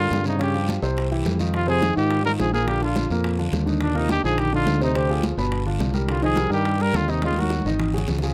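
A dry, close 1970s-style studio sound with light reverb frames this short, fiery excerpt of Afro-Cuban jazz in C minor, taken from a longer piece and moving at a brisk 211 BPM in a straight 4/4. Up front, a trumpet with vibrato carries the melody in a jazz solo style, while a dark trombone with light vibrato sits in the background on a second line; both horns stop at 7.7 seconds. A present grand piano with long sustain supplies the accompaniment, and a bright, growly fingered electric bass sits up front in a low register. Congas with a thick skin sit in the background, very quiet round, low-tuned bongos are played with hard hands, and a raspy guiro adds texture. The sophisticated harmony moves from Dbmaj7#11 through Fm9, Dm7b5 and G7 to Cm7, then turns to Ebm and Ab5 as a fill arrives at 7.2 seconds.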